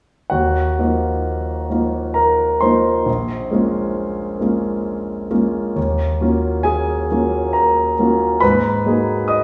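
In a loose, rubato three-beat lilt, this short excerpt of impressionist solo piano unfolds with a nocturnal, mysterious mood, moving through lush minor ninth chords between 0.3 and 9.4 seconds. The concert grand sounds clear, polished and intimate, with deep bass reaching down to Bb1, a present, up-front tone, long sustain and audible action noise. It sits in a wet recital hall reverb that places the listener further back in the room.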